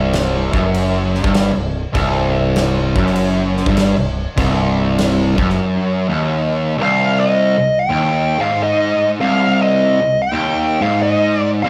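A swung 4/4 groove at 99 BPM drives this hypnotic, ominous stoner and doom metal excerpt in C minor, with a double-tracked fuzz guitar riffing low and up front throughout while a growling, overdriven fingered bass and a big acoustic rock kit, with punchy kick, medium-tuned snare and bright crash, push beneath it until both stop at about 5.6 seconds. After a short break, a dark, wah-inflected fuzz lead guitar enters at 6.8 seconds with a high melody as the harmony settles from C5 power chords onto C minor. The band sounds live in one large studio room, with moderate reverb lending the heavy tones a roomy depth.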